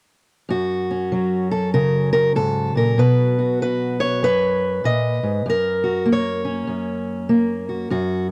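Rollicking and swaggering, this short acoustic country blues excerpt at 97 BPM swings its eighth notes in F# major. A lone fingerpicked steel-string parlour guitar plays from 0.5 to 8.3 seconds, boxy and up front with audible finger squeak, moving from F# to B at 3.0 seconds and back to F# at 5.4 seconds. It sits in a dry, close 1970s-style studio sound with moderate booth ambience.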